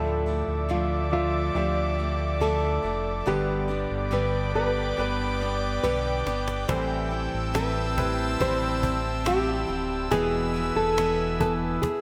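A cajon enters at 5.8 s with a fill, adding woody, close and dry hand hits with faint snares to this longing, heartbroken 70 BPM pop ballad excerpt in A minor, where a dark, thumb-plucked nylon-string guitar carries the melody through digital delay over clear grand piano, an airy, breathy detuned pad with slow attack and chorus, a picked steel-string acoustic guitar's arpeggios in the background, and a deep, up-front sine sub bass with octave, all set in a lush hall reverb with bright 1980s-style digital production moving from Dmadd9 through G and Am7 to E.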